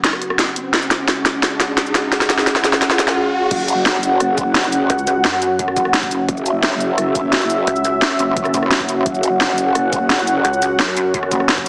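A straight 4/4 pulse at 173 BPM drives this aggressive, tense slice of dark technical drum and bass, cut from a longer piece and tuned slightly high at A4 = 441 Hz. It opens with a build-up in which an overdriven, up-front drum kit plays a fill of cracking snare, bright hats, rim clicks, shaker and crash, while a background riser climbs and a filter sweep moves through a deep, moody analog pad of detuned sawtooth and triangle tones with a sub octave, slow attack, chorus, 12-bit sampler grit and sidechain pumping. The drop lands at 3.5 seconds, bringing in a growling, wobbling bass on F#1 shaped by a formant filter, overdrive, chorus and sidechain pumping, along with a knocking, overdriven electronic kick sitting low in the mix. At 4.9 seconds a heavy, detuned pluck bass pulses in the range from F#1 to F#2, thickening the low end under the sustained pad chords. The sound is wet with a 1.1-second digital room reverb and squeezed into a heavily compressed, small-speaker radio character that makes the whole mix feel boxed in and menacing.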